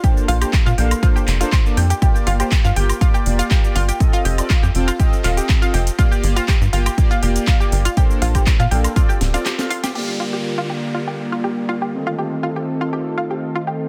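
This short cut from a longer progressive house track has a dense, heavily limited modern sound set in a digital ambience, with an emotional, dreamy mood at 121 BPM in G minor, tuned to A4 = 444 Hz. A round, detuned analog pluck plays bright arpeggios through chorus and digital delay, while a smooth, full-bodied supersaw adds mellow stabs roughened by 12-bit sampler grit and a low-pass filter, both pumping with the sidechain. An up-front, punchy electronic kick and a tape-warm house kit of cracking snare, metallic hats, handclaps, shaker, woodblock and crash drive the groove, joined from 0.3 s by a tight, driving sawtooth-and-square sequencer bass. The chords move through Bbmaj9, Gm7, F7 and Dm7, and a drum fill and brief break surround a band accent at 9.8 s. At 10.0 s a soft, chorused analog pad enters with sustained Gm7 and F7 chords alongside an electronic downlifter, while a filter sweep moves across the supersaw until the end at 13.9 s.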